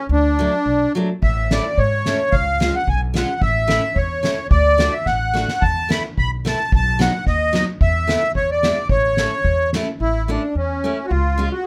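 A reedy, sweet accordion with a light tremolo tuning carries the festive, bouncy melody up front in this short alpine folk dance-band excerpt, backed by thumpy gut-string upright bass, woody picked steel-string acoustic guitar with old strings, and a soft-mallet drum kit with a fat snare and boomy kick that enters at 1.2 seconds, plays a fill at 5.1 seconds and stops at 9.9 seconds, all in a loose rubato 2/4 feel within a small room and a rough home demo mix.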